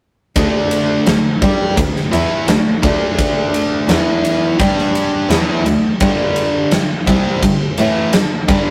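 A biting overdriven electric guitar, a bowed cello and a huge arena drum kit all enter together at 0.4 seconds in this short classic rock excerpt, the guitar playing a bright, picked, double-tracked riff up front. The mood is sunny and swaggering, moving at 85 BPM in a straight 4/4, with the riff outlining D5, E5 and G5 power chords before returning to D5 and G5. A single cello player carries the bass line low and close, its tone rich, smooth and even, with vibrato. The acoustic drums sit up front with a punchy kick, a medium-tuned snare and bright ride cymbal, heard in a pumping hall-like room. A moderate stone room reverb and tube saturation give the whole a rough rehearsal-room character, and the parts play together until about 8.7 seconds, when the cut-off fragment ends.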